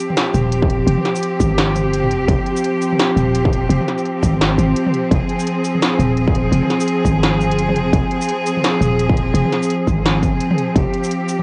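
A bright symphonic cello section opens this tense, dark half-time drum and bass excerpt, holding sustained bowed chords on Fm(add9) from the opening moment to 11.4 seconds, its light vibrato sounding intense yet distant even though it sits up front, with sidechain pumping and cassette tape colour on the ensemble. At 170 BPM in 4/4 and F minor, the groove carries a 59% swing on the sixteenths within its half-time feel. An industrial drum kit of hi-hat, shaker, snare and toms sits lower in the balance, pairing a clanging snare with smooth hats under studio reverb and tape saturation. A growling 808-style bass enters at 0.3 seconds, buzzy and sine-based with a fast attack that decays, pushed up front in the low register. An electronic kick drum, distorted and tape-warm with its own studio reverb, joins shortly after, and a brief break arrives around 10.4 seconds. The whole cut carries light reverb and a digital ambience, with the dulled top end of a home cassette recording.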